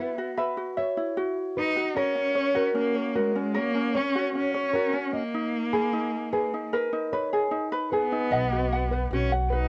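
A booth with moderate ambience and the soft haze of a home cassette recording frame this carefree, sunny slice of acoustic pop at 76 BPM, where an expressive bowed cello sings the melody up front with rich vibrato and sliding portamento over a light, fingerpicked ukulele touched by plate reverb and warm thumb-plucked classical nylon-string guitar arpeggios, until a woody, thumpy pizzicato upright bass on gut strings joins at 8.3 s.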